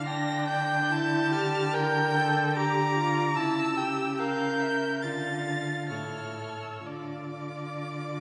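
A rubato 4/4 pulse drifting between 58 and 76 BPM carries this melancholic, solemn slow movement for string quartet in D minor, where a warm first violin sings the high melody with vibrato and portamento, a rich second violin holds a smooth, even inner line, a focused viola supplies the accompaniment and a dark, woody cello anchors the bass, all four bowed within a wet concert-hall reverb heard from further back in the room, as the harmony passes from Em7b5/D through C#dim7 to Dm at 5.0 seconds, then moves to A before returning to Dm at 6.9 seconds in this fragment of a longer work.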